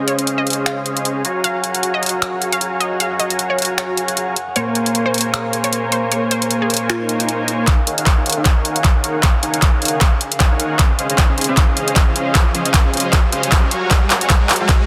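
Emotional and dreamy, this future bass passage is cut from a longer piece and moves in a swung half-time feel over lush major ninth, minor ninth and minor eleventh chords. A huge, thick supersaw carries the riff up front from the very start, pumping against the sidechain and passing through a low-pass filter. Beside it, a punchy unison pluck with tape echo sings the melody in the background until about 7.6 seconds, while a mellow, thumb-plucked concert harp ringing with echo adds arpeggios from 1.4 seconds. An overdriven dubstep kit of finger snaps, handclaps and hi-hat sits up front with soft clipping on the snare, and at 7.7 seconds a knocking, overdriven electronic kick joins as the build-up begins. There, after a brief swell, a drum fill, a riser and a filter sweep on the supersaw drive the second half, all under light reverb and a dense, heavily limited master.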